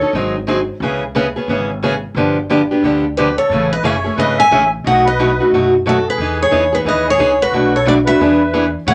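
A swung 4/4 pulse drives this lively, charming fragment of acoustic string swing, cut from a longer piece. A bright, up-front picked steel-string guitar with a parlour character carries the accompaniment throughout, while a pizzicato upright bass with woody, thumpy gut strings enters at 0.1 seconds and anchors the low end. After a brief flicker at the very start, a second picked steel-string guitar, concert-sized, bright and up front, takes the melody from 3.2 seconds, joined by a reedy musette accordion whose shimmering, vintage, band-limited tone adds a second line beneath it. The harmony moves through seventh chords such as C#m7, Amaj7, B7 and Emaj7 before settling on E7. A wet club reverb gives the ensemble a small, intimate room sound.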